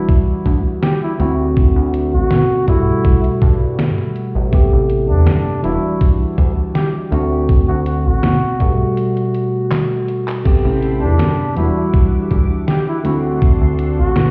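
Muffled as if heard through a wall and cassette tape, this hazy, melancholic vaporwave fragment drifts over an Em9, D7, Gmaj9, Am9 cycle carried by a bright, clean tine electric piano soaked in lush chorus and analog delay. A breathy, whispered flugelhorn sings an intimate jazz-style line with soft, scooped notes and vibrato through tape echo. Underneath, a gritty, sampler-style drum machine with a thumpy kick and glossy, nasal chorused synth bass sit up front, pausing for a break with a drum fill at 9.7 seconds before a thick, detuned unison pad fades in at 10.5 seconds.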